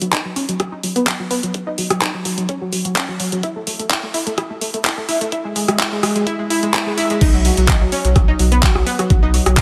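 Expansive and euphoric, this progressive house passage, cut from a longer piece, opens with a bright, detuned sawtooth analog pluck playing arpeggios up front, its filter sweeping through a build-up while lush chorus, dub echo and sidechain pumping color it. An overdriven pop drum kit of crash cymbal, handclaps, hi-hat and rim click sits close alongside a knocking electronic kick drum that enters at 0.1 seconds, both re-recorded in a small room. At 7.2 seconds the drop lands on a B5 chord as a deep, thick, saturated sine sub bass arrives with its own sidechain pumping, and a moderate, lush hall reverb surrounds the mix.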